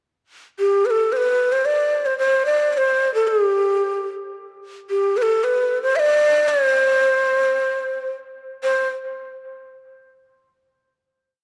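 Stately and passionate, this short Arabic piece in free time features a solo ney, breathy and hollow with vibrato and crisp attacks, sitting up front as it traces an ornamented modal melody between G4 and E5 from 0.6 to 8.9 seconds, its tone carried by an analog delay and a moderate recital hall reverb captured through close, detailed microphones, with a final note arriving at 8.6 seconds.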